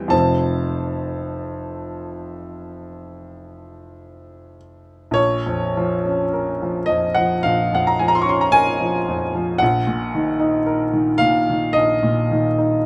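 A single grand piano sits up front in a light reverb, its tone warm and intimate, with the natural action noise of the instrument clearly audible beneath the notes. This romantic nocturne in B-flat minor moves slowly in 4/4, somewhere between 46 and 57 BPM, with a rubato feel that lets the pulse breathe. The mood is melancholic and yearning, and the piano ranges from a deep F1 up to D-flat 6. The harmony opens on F, settles into B-flat minor when a new passage begins at 5.2 seconds, and moves to E-flat minor over a B-flat bass at 9.6 seconds. Lasting just under 13 seconds, the recording is cut from a longer piece.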